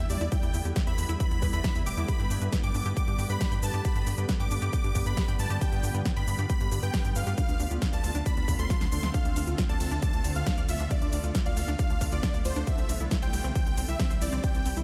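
Set in light reverb and a digital ambience, this excerpt of uplifting trance feels euphoric and emotional. An overdriven electronic kick sits up front with a punchy, layered weight, joined by a big-room dance kit whose crisp hi-hats, ride cymbal, shaker and snare carry their own overdrive, with a short drum fill at 8.7 seconds. Underneath, a tight sequencer bass built from sawtooth and square waves drives the groove with a nasal, plucked filter tone and sidechain pumping. A huge supersaw carries the melody, thick, unison-detuned and compressed, with a sub octave, vibrato, delay and sidechain pumping of its own. Further back, a mellow sequenced synth plays chorused arpeggios that pump and trail delay, while the harmony moves from Em7 through G and Dm7 to C.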